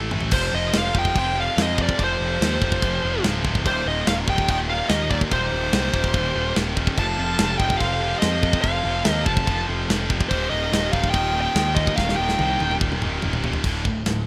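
Epic and dark, this 144 BPM heavy metal excerpt drives in straight 4/4 with a tight, bright-cymbaled drum kit, fills at 0.0 and 12.0 seconds, punchy fuzz-overdriven bass, a very quiet heavy guitar and a scooped, distorted guitar in the background churning out riffs, while an up-front high-gain lead guitar carries the melody over a clear, vibrato-laden harmonica second line and a distant, very quiet symphonic string section holding smooth chords that move from F to Eb and land on Dm at 13.6 seconds, all in a rough, dry home demo mix.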